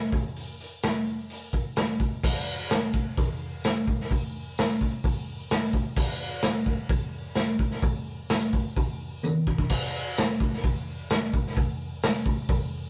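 A raw garage drum kit leads this carefree, jangly rock excerpt at 129 BPM in a straight 4/4, its boomy kick, medium-tuned snare, hi-hat, toms, crash and splash cymbals sounding gritty and saturated, with a pumping small-room character and a rolled-off top that sits up front. A jingly tambourine enters at 2.7 seconds, close-miked yet tucked in the background, as the groove moves into a new section, and a drum fill arrives at 9.2 seconds. Light reverb and a rough rehearsal-room sound give the clip a loose, unpolished feel.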